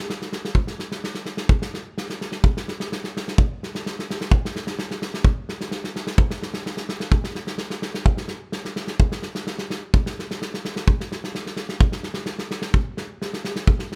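A loose acoustic drum kit sits up front, its punchy kick and medium-tuned snare driving a festive, virtuosic Balkan folk groove in a straight 2/4. The kit rings in a small, pumping room with only a touch of reverb, giving the hits a close, immediate feel. Cut from a longer piece, the passage plays one section and then repeats it from 6.2 seconds.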